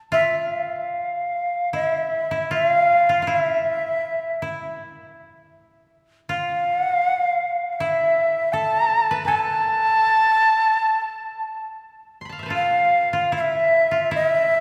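A breathy bamboo shakuhachi with a crisp, chiffy attack carries an austere, meditative melody up front from the opening moment, while a woody koto played with fingerpicks adds a quieter second line alongside it in this rubato Japanese chamber excerpt, heard in a reverberant church-like hall and shifting into a new section at 12.5 seconds.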